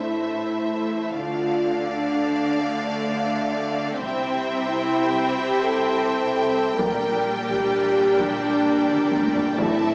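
Moving in a straight 12/8 at 86 BPM counted in dotted quarters, this cinematic, epic orchestral film score feels relentless and dramatic as it rolls from Am through Dm and C to Gm/Bb. A barely audible, huge impact opens the passage, while the horn section, the most present part, holds sustained chords with light vibrato and a classical-style character. Around it, a lush string section sustains rich chords, and the violins carry a focused, vibrato-laden melody with a smooth top, backed by a second violin line set in the background. Violas and distant cellos fill out the middle and low end, and a clear double bass section anchors the bass. At 4.0 seconds a distant taiko ensemble enters with hard sticks in a large room, adding a drum fill from 8.9 to 9.6 seconds. The whole cut from a longer piece sits in a wet scoring-stage reverb with a small-speaker sound.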